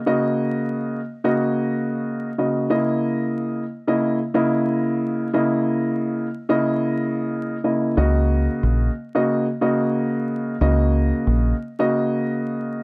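Vinyl crackle and a moderate studio reverb give this short cut from a longer hip hop piece a gritty, moody surface. A dark baby grand piano carries the accompaniment from 0.1 seconds to the end, its mellow, worn, vintage tone sitting up front and filtered at both ends of its spectrum. It plays between C#3 and D#5 over a harmony that moves from D#m7 to C#m69 at 2.7 seconds and back to D#m7 at 8.0 seconds. That same moment brings in a deep dub fingered electric bass, foam-muted and round with a direct, amped presence. The bass holds the low end between A#1 and C#2 until 11.5 seconds. The groove runs at 91 BPM in 4/4 with a 58% swing on the sixteenths, tuned to A4 = 442 Hz.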